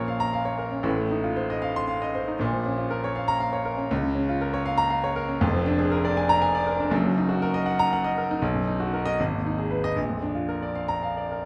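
A rubato 6/8 pulse drives this stormy, passionate excerpt from a virtuoso classical piano study, a solo grand piano ranging from F1 up to C6 across its 11.5 seconds. The piano sounds clear, intimate and natural, placed up front with its action noise audible, while a wet recital-hall reverb lingers around it. The minor-key harmony turns restlessly through shifting chords before settling on a major chord at 10.0 seconds.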